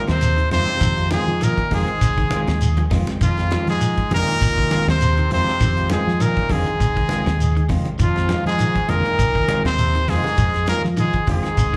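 A brilliant trumpet with light vibrato and slapback echo carries the melody up front in this funky, driving afrobeat cut, backed by a bright trombone section in the background and a growling, raspy tenor saxophone sitting very quiet and distant on the second line. Beneath them, a round, punchy fingered bass and a damped 70s drum kit with a fat snare and tight kick drive the swung groove, with a drum fill at 2.8 seconds, while grainy shekere and low-tuned congas add percussion. A twangy, slightly broken-up electric guitar picks quiet arpeggios and a dark, clean semi-hollow guitar plays stabs through slapback and tape echo, the band heard as a live gig through the venue's PA with club reverb.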